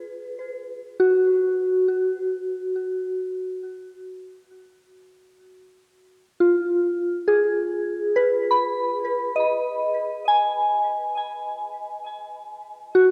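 A soft FM synth bell plays alone and up front from 0.0 to 13.1 seconds, its pure, mellow tone marked by a fast attack and decaying notes that range from E#4 to B5, thickened by chorus and delay. This serene ambient passage moves at 68 BPM in 3/4 with a straight feel, resting on a B chord in B lydian, with tuning set to A4 = 441 Hz. A lush hall reverb and a dark, warm production give this short section, cut from a longer piece, a softly enveloping space.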